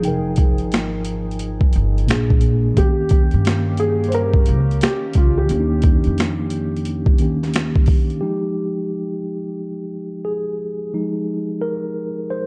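Hazy and melancholic, this dark lo-fi hip hop excerpt in F minor swings at 88 BPM with a gritty, overdriven boom bap sampler-style kit of thumpy kick, high-tuned snare, hi-hat and finger snaps, a woody pizzicato gut-string upright bass, a warbling detuned chorus pad in the background, and a soft felt-muted upright piano melody with tape echo that ends at 7.5 s, before the mellow, up-front tine electric piano, heard from the start as accompaniment through cassette-tape coloring, takes a clean solo from 8.2 s to 12.5 s as the drums and pad fall away.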